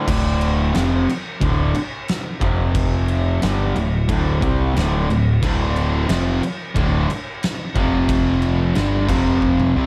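A dark, roomy studio sound frames this ominous, brooding stoner and doom metal excerpt in D minor at 90 BPM, where an up-front, double-tracked fuzz guitar riff and a growling, overdriven picked bass ride over an oversized low-tuned acoustic drum kit with boomy kick, fat snare, toms and dark crash cymbals, a second distorted electric guitar joins in the background at 5.4 seconds, and a drum fill arrives at 9.4 seconds as the chords move between Dm, F5 and G5.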